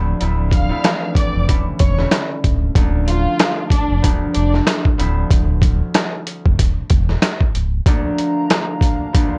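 A sampler-style drum kit sits up front in this tough, dark boom-bap hip-hop excerpt, its thumpy kick, medium-tuned snare, rim click and hi-hat sounding compressed, pitched down and muffled, as if re-recorded in a small room, and carrying a swung, head-nodding feel. Beneath it, a deep, full sine sub bass with an added octave gains grit from transformer saturation, while a fingerpicked concert harp rings through the whole clip, filtered and softened by cassette tape. From 0.5 to 4.5 seconds, a close, expressive violin section carries the melody with vibrato and portamento, its bowed lines trailed by a slapback echo. Near the end, at 8.1 seconds, a moody analog pad arrives with slow-attack, detuned chords thickened by lush chorus. The harmony moves through shadowy minor and major-seventh colours, and the whole mix is wrapped in light reverb and a worn, warbling old-tape character with pitch drift.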